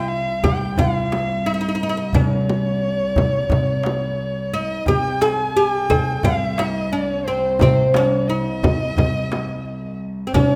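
A bright, woody oud carries the melody up front from the very start. Alongside it are a dark, bowed violin playing a second line with vibrato, a plucked upright bass with steel strings, and a warm cello section holding a low drone with soft attacks and expressive portamento. At 0.4 seconds a crisp, deep metal-shelled darbuka enters alongside a small frame drum struck with hard hands, close and dry in the background. This stately Arabic maqam ensemble passage in 4/4, cut from a longer piece, moves at an unhurried, straight pace. The group sits in a moderate recital hall reverb, giving the strings a chamber glow around the double-strung, fretless oud.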